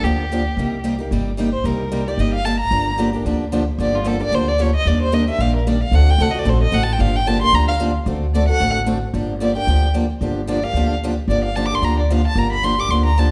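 A fast swung 4/4 at 224 BPM drives this fiery, virtuosic excerpt of acoustic string swing in G minor, with a woody, thumpy pizzicato upright bass on dark gut strings sitting up front beneath a bright, boxy picked steel-string guitar with fresh strings comping through changes from Gm7 to Ebmaj7 and D7. Over them a single bowed violin solos throughout the 13.3 seconds, its soft attack, vibrato and expressive portamento colouring the melody. A moderate recital hall reverb, like that of a church or concert hall, gives the trio a natural sense of space.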